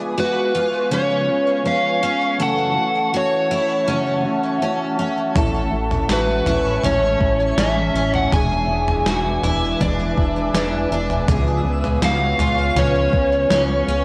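Blissful and ethereal, this 14-second dream pop excerpt drifts at 81 BPM in a straight 4/4, moving through C#7, F#m7, Amaj7 and E7 before settling back on C#7. A dark, clean electric guitar with tremolo and analog chorus plays accompaniment from the start, joined by an airy, detuned pad holding sustained chords and a bright, jumbo twelve-string acoustic guitar picking shimmering, octave-doubled arpeggios through lush chorus and digital delay. Up front, an overdriven slide guitar carries the melody from 0.2 seconds, its tone warm and fingered, trailed by digital delay. At 5.4 seconds a glossy, retro synth bass with pulse-width modulation and a moving filter arrives alongside a thumpy, sampler-style 80s drum machine sitting in the background, its kick, snare and toms soaked in gated reverb. A faint, sparkling granular texture with an octave-up shimmer enters at 5.9 seconds, and the whole mix sits in a moderate concert hall reverb with the worn, warbling pitch drift of old cassette tape.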